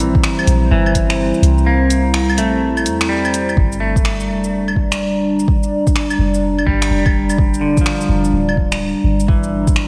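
Rainy and ghostly, this future garage fragment with a swung 4/4 groove is cut from a longer piece and drifts through a dreamy mix soaked in hall reverb and vinyl crackle. A dark analog pad sits up front with moody, detuned sustained chords, its slow attack and long release colored by chorus and phaser. Beneath it, a soft 808-style bass gives a round, sine-like low end, while a bright, clean semi-hollow electric guitar adds picked accompaniment through an analog delay, with all three pumping against the sidechain. An overdriven electronic kick with a deep, layered punch drives the beat, joined by a deep house kit of claves, finger snaps, hi-hat and shaker that share its small-room grit. The kick drops out from 1.7 to 3.6 seconds, and as it returns the harmony moves from C7 to G minor for the second section.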